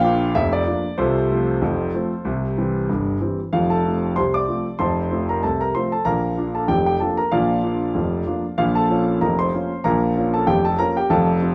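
A clear, polished grand piano plays a jaunty, playful solo ragtime excerpt at 95 BPM in 2/4 with a light swing, ranging from deep bass to bright treble through chords moving from Bb and F/C to C before a new section opens on F at 3.5 seconds and later turns to Bb minor, all set up front in a moderate large-studio reverb.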